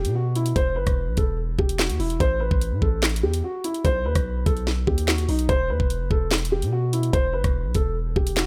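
A digital ambience surrounds a close, present mix, with piano, bass and drums each sitting up front. This is a cold, ominous drill track at 146 BPM in 4/4 with a half-time feel, set in E harmonic minor, and it is cut from a longer piece. A dark, boxy concert grand piano carries the melody between D#4 and C5 through a low-pass filter, giving it a muffled, deep-bassed tone. Beneath it, a long sustained 808-style bass moves between E1 and B2 with a deep, sine-like, mellow sound that hits with a fast attack and then decays. The electronic drill kit comes through with a knocking kick, a sharp snare, rim clicks, handclaps and metallic hi-hats. All three parts play throughout the 8.5 seconds over a chord sequence of E5, A5, B and back to E5.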